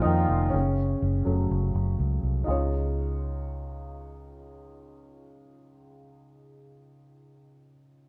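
A dark, woody upright piano with a lush chorus opens this uplifting pop excerpt at 124 BPM in D-flat major with a gentle sixteenth-note swing, joined almost at once by a round, foam-muted vintage electric bass that sits up front until 5.7 seconds, all set in a small room with light reverb and a bright 1980s-style digital sheen.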